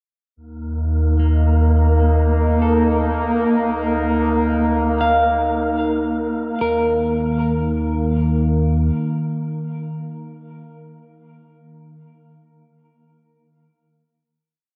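Weightless and serene, this short ambient piece drifts at 77 BPM over a round sine sub bass and an evolving, detuned analog drone with chorus, while an airy, breathy wind-like noise layer holds a high note from 1.0 to 6.6 seconds. An electric guitar at the edge of break-up fades in with fingered arpeggios, its three slow loops of unequal length drifting against each other through spring reverb and diffuse ambient delay. The harmony moves from Eb5 to Bbmaj7/D before settling on a final Eb5 chord at 6.6 seconds, the whole piece resting in a huge, dark reverb.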